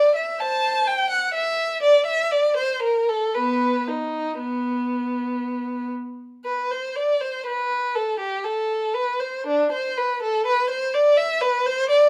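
In an unevenly pulsed triple metre with free rubato, this grave yet flowing excerpt from a baroque-style classical suite movement features a single bowed violin playing solo from 0.0 to 12.1 seconds, its rich tone, expressive vibrato and sliding portamento set up front in a moderate stone-room reverb.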